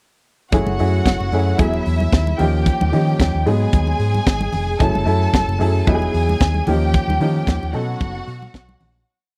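The recording is dry and close, with the feel of a 1970s studio session and little reverb around the instruments. This short, celebratory disco piece has a glamorous, straight four-on-the-floor groove, set by an up-front funk kit with a tight kick, a high-tuned snare and open hi-hats on the off-beats. An overdriven, round, punchy fingered electric bass plays octave disco lines with chromatic approach notes. A dark, mellow baby grand piano pushes rootless chords with grace notes, its short sustain and audible action noise giving it an intimate presence. A lush violin section bows long, smooth high lines with vibrato, while damped, thick-skinned congas sit in the background with a syncopated groove. The whole piece is a pre-chorus moving through chords such as F#m7, Emaj7 and D#7, and it fades out from 6.9 seconds to the close at 9.1 seconds.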